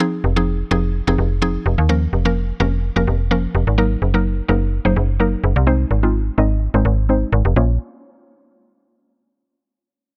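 Driving and energetic, this dance-pop excerpt moves in a straight, steady four-beat pulse, cut from a longer piece. A mallet-like synth pluck carries the accompaniment from the opening, its woody, round tone shaped by a short, percussive decay, a noise layer and a chorus shimmer. A filter sweep runs across the pluck through the first section. A slap-like FM bass enters at 0.2 s, snappy and digital with a metallic bite that sits up front in the mix. The harmony cycles through Fm7, Bbm/F, Ebm/Gb and Ab before landing on Bbm as a new section begins, and both parts stop at 7.8 s. The sound is dry and close, with little reverb.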